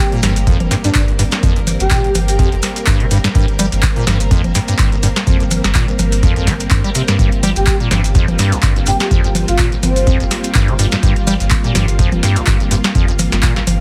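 A driving, hypnotic acid house groove swings its sixteenths at 125 BPM in 4/4, built on a deep, tape-warm electronic kick that joins at 0.5 seconds and a booming, up-front analog drum machine with crisp snare, handclaps, metallic hats and congas, while faint, grainy maracas add a mellow acoustic shimmer. Over a static G minor chord, an up-front, squelchy square-wave acid bass riff with a resonant filter sweep, tube saturation, lush chorus and delay pumps against a round sine sub bass, and a bright, vintage string machine holds sustained, sidechain-pumped chords. A soft, breathy flute-like synth lead with chorus, cassette tape colour and delay sings two brief phrases, the second at 7.6 seconds, all within a heavily compressed, radio-like mix with light reverb in this short excerpt.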